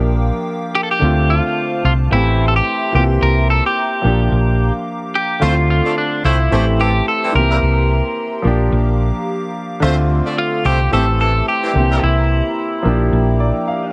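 A lightly swung 4/4 afrobeats groove at 109 BPM in D minor carries this mellow, smooth cut from a longer piece, with a round, dark fingered electric bass up front, a bright, compressed clean electric guitar melody touched with digital delay, polished baby grand piano accompaniment, an airy, flute-like pad shimmering with chorus over the cycling Bb6, Dm7, Am7 and C7 chords, a distant, roomy horn section doubling in octaves from 5.4 to 12.0 seconds, and a short piano fill closing it out at 13.1 seconds in a small room.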